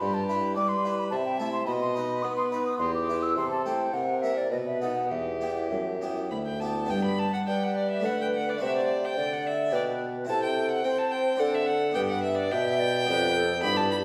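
A gut-string violin with light vibrato carries the melody up front from the opening moment, alongside an airy wooden flute with crisp attack on a second line, a full, plucked harpsichord with two sets of strings in accompaniment and a mellow, punchy solo bassoon holding the bass close by, together forming a flowing, introspective baroque-style sonata movement in 3/4 at 106 BPM with rubato that turns from E minor to G major at 6.9 s and sits in a wet scoring-stage reverb heard from further back in the room, in a fragment cut from a longer piece.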